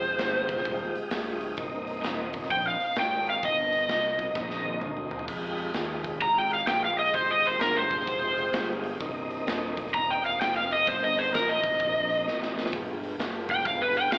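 Smoky and heavy, this blues rock and southern rock power trio clip swings at 129 BPM in C minor, with a bright, overdriven slide guitar up front taking a solo across the full 14.2 seconds, carried by slapback echo. Beneath it, a smooth tonewheel organ holds sustained chords through a slow rotary speaker and chorus vibrato with audible key click, while a growly fuzz bass anchors the low end and a big rock drum kit with bright cymbals and a punchy kick drops fills at 4.4 and 12.3 seconds. The harmony moves between Fm9 and Cm9 before landing on G7b9, and the whole cut sounds like a live club gig heard through the venue's PA with light reverb and an AM radio sound.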